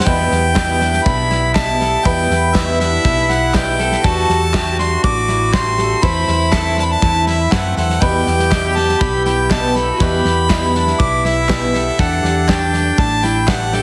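Heavily compressed into a radio-like sound with light reverb, this yearning, bittersweet indie folk excerpt in E minor moves at 121 BPM, with an up-front harmonica with light vibrato and slapback echo carrying the melody over boxy, picked swing-style acoustic guitar with audible finger squeak, background mandolin arpeggios on double strings also touched by slapback echo, a distant bowed cello floating on a soft-attack second line, a round, dark hollow-body electric bass, a small-room country drum kit with a punchy kick, and very quiet crisp handclaps and jingly tambourine that enter at 0.6 seconds.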